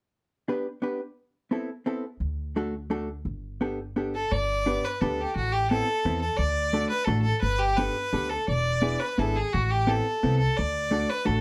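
A vintage hollow-body jazz guitar opens this whirling, nostalgic musette excerpt in G major at 173 BPM in 3/4, its dark, picked electric tone compressed and up front, joined at 2.2 seconds by a woody, thumpy pizzicato upright bass and at 4.1 seconds by a single bowed fiddle carrying the melody with a clear, focused sound, light vibrato and a distant quality, all set in light reverb over chords moving through G, Amadd9, D, Gadd9 and E7.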